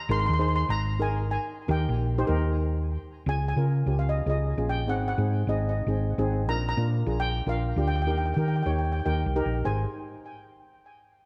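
From 0.1 s a shimmering lead steel pan with a touch of delay carries the melody over a smooth, darker double-seconds pan and a round, punchy hollow-body electric bass sitting up front, all moving through Ab major changes at a festive, sunny 150 BPM calypso in straight 4/4, set in a moderate stage reverb and cut from a longer piece.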